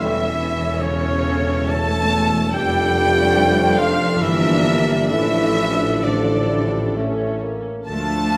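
A rubato 3/4 pulse at 64-74 BPM carries this solemn, elegiac classical passage in D minor, where a dark, woody violin section sings the melody over lines from a warm oboe, a distant clarinet, a hollow, airy flute group and a rich, expressive second violin section, while a lush viola section with portamento, sustained chords from a bright trombone section and a tight, mellow French horn section, and a bass of smooth cellos, double basses and a roomy tuba fill out the texture, a mellow bassoon joins at 6.0 s, and the whole sits in a reverberant recital hall.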